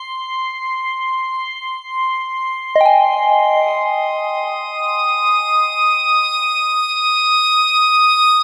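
Serene and weightless, this ambient passage floats in free time, cut from a longer piece. A glassy, drifting texture of sine-like overtones with a slow attack and long release sits up front from the start, thickened by chorus and its own reverb, and at 2.8 seconds a soft, pure FM synth bell joins with gentle, mellow arpeggios, its fast-attack, decaying notes carried by chorus and tape echo. The whole is bathed in a cathedral-like reverb and carries the character of cassette tape.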